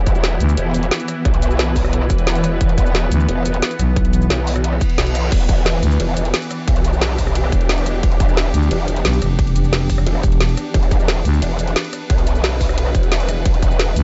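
A thick, up-front FM bass growls in bursts from 0.4 seconds, with longer runs from 3.1 seconds and again from 8.5 seconds, riding over a wobbling, distorted growl bass with chorus and overdrive, a punchy overdriven electronic kick, a drum and bass kit with a woody snare and metallic hats, a tense, warbling granular drone that pumps through its own reverb, and a faint reverse cymbal at 4.8 seconds, all in a dark, futuristic, mechanical 177 BPM technical drum and bass excerpt in E minor with a dry, muffled production.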